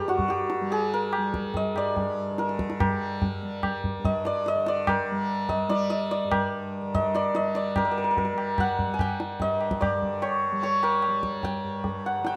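Hindustani classical music in raga Todi on G, introspective and solemn, moves in 3/4 at 145 BPM and speeds up throughout this fragment. A bright, hammered santur carries the melody up front, over a softly plucked, buzzing tanpura drone and close, high-tuned tabla, all in a small room, with a new section arriving at 7.8 seconds.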